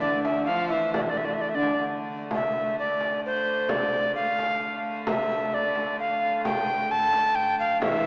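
A breathy alto recorder leads this driving, ancient medieval dance in D minor, its soft-attacked wooden tone up front over a biting, earthy hurdy-gurdy drone and a distant, reedy viola da gamba second line that drops out at 1.8 seconds and returns at 7.8 seconds. A small, bright frame drum enters at 0.2 seconds, marking a straight 3/4 at 131 BPM with a large-room character. Cut from a longer piece and tuned to A4 = 437 Hz, the recording sits in a wet church reverb with a small-speaker sound.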